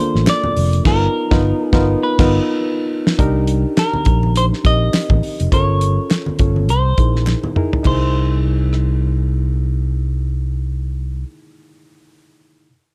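A swung sixteenth-note groove at 103 BPM in 4/4 carries this bittersweet, silky slice of lush 1970s-style soul, with a damped drum kit giving a fat snare and tight kick up front, a punchy fingered electric bass, and very quiet low-tuned congas plus crisp group handclaps tucked in the background. A lightly overdriven reed electric piano voices rootless and altered chords from the start, while a dark, clean semi-hollow electric guitar carries the melody until 11.2 s. Band accents and drum fills mark the changes, the kit drops out at 8.9 s, and the warm small-room production leaves the electric piano alone to ring until 12.7 s.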